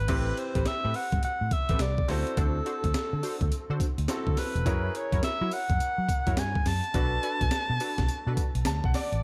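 Up front, a smooth alto saxophone with vibrato carries the melody in this confident, slick new jack swing excerpt at 105 BPM in A dorian, swinging over chords that move from Am9 through D7 and F#7 to Bm7. Beneath it, a gritty, overdriven breakbeat drum kit with a thumpy kick, high-tuned snare, hi-hat, tambourine and crash pairs with a dark, round, foam-muted electric bass, while a detuned sawtooth polysynth with chorus adds punchy, filter-plucked stabs until 8.4 seconds. A clear, polished baby grand piano accompanies throughout and closes with a fill from 8.4 seconds, all in a dry, close-sounding mix.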